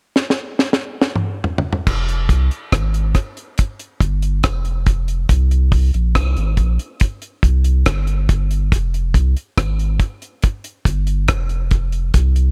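A drum fill on a dry, dark acoustic reggae kit opens this heavy, deep dub reggae passage in F minor at 70 BPM, its high-tuned snare, tight kick, rim clicks, toms, hi-hat and crash sitting up front. At 1.9 seconds a warm, round, sine-like sub bass arrives up front with a fast attack and long sustain, holding low between F1 and C2 alongside the smooth kit. The sound is nearly free of reverb, tuned to A4 = 438 Hz, and the passage is cut from a longer piece.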